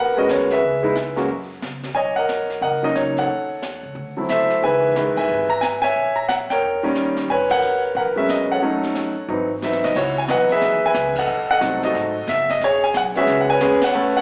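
Jazz piano trio swing, cool and moody, cut from a longer piece, where a clear, up-front concert grand carries the melody with a slapback echo over woody, growly pizzicato upright bass and a dark, smooth brushed drum kit with boomy kick and dark cymbals that joins at 0.3 s, with band accents, a short drum fill from 9.6 s leading into a new section at 10.0 s, and the whole trio heard as a live club gig through the venue's PA with an AM-radio tone.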